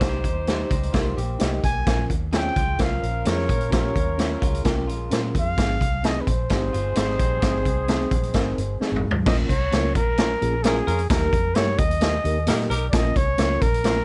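A breathy, close-miked trumpet carries the melody up front from 1.6 seconds, intimate and whispered with a soft attack and vibrato, over a raw, gritty garage drum kit with a punchy kick and a drum fill at 8.8 seconds in this passionate, urgent uptempo 1960s-style soul cut at 130 BPM in Bb dorian. A dark, foam-muted fingered electric bass and a reedy electric piano with fast tremolo hold the groove, while a warm horn section with light vibrato plays a second line until 12.9 seconds. A slightly broken-up electric guitar through a small old amp picks a compressed riff in the background between 0.7 and 7.6 seconds, all under light reverb and a rolled-off top end.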